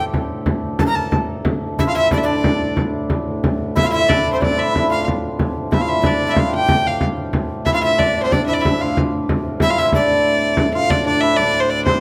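A rich, smooth fiddle carries the melody up front over shimmering, ringing hammered dulcimer and a reedy, breathing pedal harmonium drone, joined almost at once by a deep, soft-handed frame drum, in this driving, ancient-sounding medieval dance in D minor and 6/8 at 123 BPM (tuned to A4 = 437 Hz), while a breathy, mellow tenor recorder with chiff, vibrato and an unsteady quality drifts in the background from 0.8 to 10.7 seconds, all set in a moderate recital-hall reverb and captured close and detailed.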